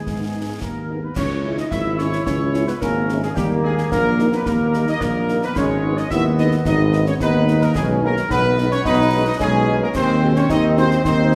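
Military-style march for wind band in a stern, martial 2/4, cut from a longer piece, with a dark, distant trumpet section carrying the melody over a mellow euphonium second line in the background and soft-attacked trombone chords. An up-front tuba anchors the bass, and a very quiet, smooth-topped French horn section joins with accompaniment from 0.3 seconds. Close, dry concert snare, bass drum and clash cymbals keep the march, all set in a roomy concert hall reverb as the harmony moves from G#m to G#7/D# by 10.0 seconds.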